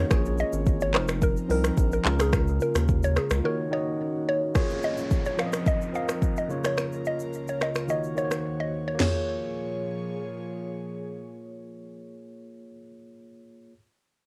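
A woody, phaser-tinged mallet-like synth pluck carries the melody over a clean tine electric piano, a soft, breathy pad and a round, dark analog bass that drops out at 3.4 seconds, while an up-front electronic afro-pop drum kit with deep kick, sharp snare, snaps, claps and shaker drives this smooth, mellow afrobeats excerpt in Bb minor at 108 BPM, and a downlifter enters at 4.6 seconds within the light reverb of a home cassette recording.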